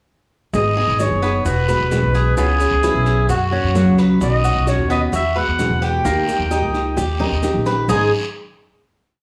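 Heard through a moderate large-studio reverb over small room ambience, this danceable, sultry Cuban son and guajira piece in G# minor at 130 BPM carries a distant, vibrato-rich trumpet playing motif-based call phrases over fingerpicked nylon-string guitar strummed with muted slaps, a woody, growly pizzicato upright bass up front in a syncopated figure, a bright, metallic tres guajeo entering at 0.8 seconds, very quiet round bongos in steady eighths, raspy guiro, and grainy maracas in the background, with a drum fill at 7.0 seconds leading into a closing G#m chord at 7.9 seconds.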